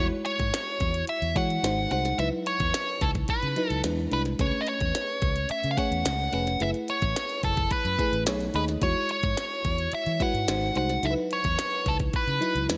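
Bright 1980s-style digital production with light reverb frames this glossy, breezy jazz-funk pop excerpt at 108 BPM in 4/4, where a nasal, overdriven lead guitar with a parked wah carries the melody up front over a bell-like FM electric piano sparkling through lush chorus, a round, punchy fingered electric bass, and a glitchy electronic drum kit entering at 0.3 s with a deep kick, tiny snare, clicky hats and gated reverb, over a progression that moves through E69, C#m11, Amaj9/C# and B13.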